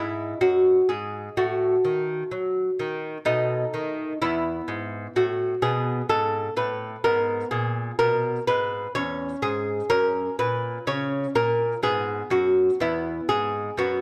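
In a gentle triple metre at 63 BPM, this baroque-style classical dance unfolds with a rubato feel, the pulse stretching and settling freely throughout its 14 seconds. A solo lute carries the entire passage, fingerpicked on nylon double strings, some of them octave-doubled, giving a bright, delicate shimmer that sits up front in the sound. The mood is serene and radiant, rooted in E major and ranging from the low E2 up to C#5, with the harmony moving through F#m/A and B7 before arriving on E at 4.2 seconds and later passing through G#m, C#m/E and F# on its way home. Close, detailed microphones capture the intimate acoustic character of the instrument, framed by a light touch of reverb. Cut from a longer piece, it feels like a poised phrase of a graceful courtly dance.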